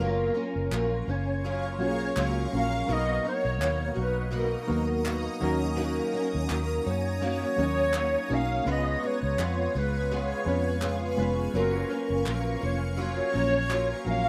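A dark, smooth-topped clarinet carries the melody in a classical style, its ensemble chorus lending a gentle haze to this nostalgic, dreamy stretch of indie bedroom pop in F# major, cut from a longer piece. Underneath, a foam-muted vintage electric bass sits round and up front, while a picked steel-string acoustic guitar with a warbly pitch drift and analog keys softened by cassette tape fill out the accompaniment. A shimmering, ethereal pad joins at 1.0 seconds with slow-attack, detuned sustained chords, its octave-up shimmer, phaser and built-in reverb floating high above the rest. Crisp, saturated group handclaps mark time at 83 BPM in 4/4 with a light sixteenth-note swing, entering at 0.7 seconds. The chords move from F#maj7 through Bmaj7, D#m7 and C#7 before returning home, all captured in a rough home demo mix with light reverb.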